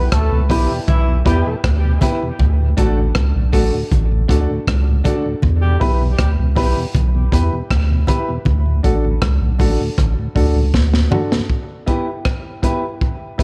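A dark, lightly reverberant dub reggae cut, spacious and deep, rests on a round sine sub bass and a gritty, saturated breakbeat kit with a tight kick, both up front, while a distant horn section and the woody stabs of an upright piano trail off in dub echo, a clean tonewheel organ turns through a slow rotary speaker in the background, soft-handed congas sit very quietly, and a slightly broken-up electric guitar, bathed in spring reverb and echo, drops out at 5.3 seconds and returns at 11.9 seconds after a drum fill.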